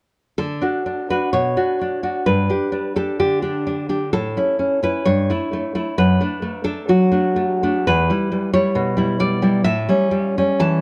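A fingerpicked nylon-string guitar carries this short romantic fragment on its own, sounding full-bodied and deep in the classical manner, with audible finger squeak and a tape echo. The mood is nostalgic and warm. The piece sits in D major and moves at a rubato 58-69 BPM in 2/4. The guitar spans E2 to A5, playing from 0.4 to 10.8 seconds through a progression of D, Bm, G5, A, A7/G, D/F#, Em and A7, arriving on A7 at 9.6 seconds. The guitar sits up front in a dark production with light reverb, and the passage is cut from a longer piece.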